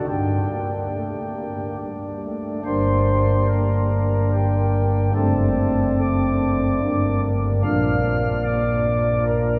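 Grave and dark, this brief classical chorale-style fragment for solo pipe organ moves in a rubato, unevenly paced 3/4, its soft flute stops sounding up front with a warm, romantic voicing and a tremulant, while a long, wet cathedral reverb lends the sense of hearing it from further back in the room.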